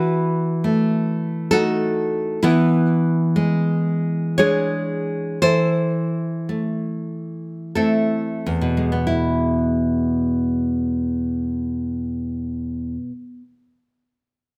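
Romantic solo classical guitar in a rubato 3/4: a nostalgic fragment cut from a longer work, with a full-bodied, fingerpicked nylon-string guitar close and up front in moderate recital-hall reverb, spanning E2 to C#5 and slowing from 1.1 to 9.1 seconds as the harmony moves through B7/E, E7 and Am/E before settling on E at 9.1 seconds.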